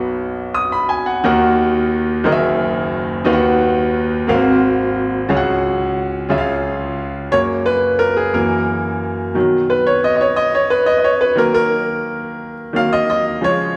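A clear, boxy grand piano with short sustain sits up front and plays alone through this hopeful, soulful gospel fragment in a slow, straight 6/8, moving through rich chords such as F#13 and G#13 before settling on C#sus4 and C# and opening into a new passage at 7.3 s, all set in a wet concert hall reverb over a small room ambience.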